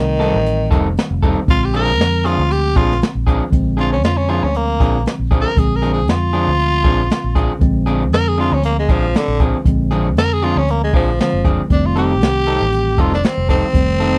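Rollicking and laid-back, this straight-eighth soul blues excerpt moves at 117 BPM in Bb mixolydian, with a growling, raspy tenor saxophone soloing up front through a slapback echo over chords that shift from F9 to Bb9. A worn, slightly out-of-tune tine electric piano and a round, foam-muted fingered electric bass carry the accompaniment, while an electric guitar through a small old amp adds slightly broken-up picked stabs from 0.2 seconds. A jazz brush drum kit with a boomy kick and rolled-off top sets the easy groove, all captured in a dry, close 1970s-style studio sound.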